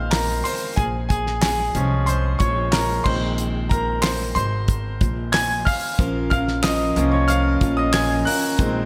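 Bittersweet and dramatic, this short piano-driven pop excerpt in Bb minor moves at 92 BPM in a straight 4/4, with a brilliant, up-front concert grand carrying a solo over chords drifting from Ab/Bb through Db/Bb and Ab to Bbm, its slapback echo adding sheen. A woody, thumpy pizzicato upright bass and a damped 70s kit with a fat snare, tight kick and bright cymbals sit up front alongside it, while very quiet, crisp group handclaps add a human touch. At 6.0 seconds a picked steel-string acoustic guitar riff enters with its own slapback echo, all set in a concert hall reverb that gives a big arena sound.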